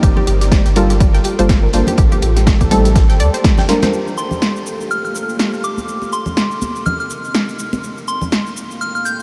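Smooth and hypnotic, this deep house passage in G minor moves at 123 BPM with a swung 16th-note feel, bathed in a huge, dreamy reverb and a layer of vinyl crackle. A moody, evolving sawtooth pad holds sustained chords throughout with a sidechain pump, while a round analog pluck plays arpeggios in the background through chorus and delay, and a soft, warbling chord stab adds vintage color. The low end comes from a deep sine sub bass and a layered, punchy electronic kick with overdrive sitting up front, and both drop out just before a drum fill at 3.7 seconds. An overdriven analog drum machine keeps hi-hat, shaker and snare running across the whole clip, joined by bright, high-tuned congas and a very quiet, loose acoustic kit with ride cymbal and a fat snare. The chords first move from Gm9 to Am7b5, and from 4.2 seconds a pure, gentle FM synth bell carries the melody up front through chorus, phaser and tape echo, over a return to Gm9 that shifts to Cm7 and back to Gm9.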